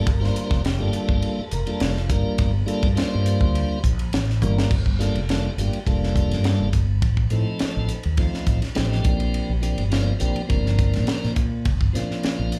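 A round, dark fretless electric bass with lush chorus drives this intense electric jazz fusion excerpt in G minor at 104 BPM alongside a tight funk drum kit with a high-tuned snare, whose fill at 4.4 seconds leads into a new section at 4.7 seconds, and a piping, scooped tonewheel organ through a slow rotary speaker with slapback echo, as the chords move from Gm9 to F7/A and Bb69 in a live club sound heard through the venue's PA.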